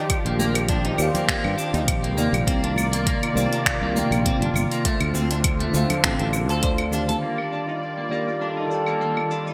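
Sunset chillout with a wistful, smooth swing, built on a bell-like tine electric piano, dark, veiled con sordino strings and a twangy, picked clean guitar playing arpeggios through chorus and delay, all bathed in plate reverb with a bright 1980s-style digital sheen. An up-front deep house kit of hi-hat, cabasa, claves and finger snaps sits alongside a deep electronic kick, a growly, punchy fretless bass and very quiet acoustic congas. The kick drops out at 6.8 s and the bass at 7.1 s, leaving room for a mellow, distant flugelhorn that enters on a single note at 8.4 s.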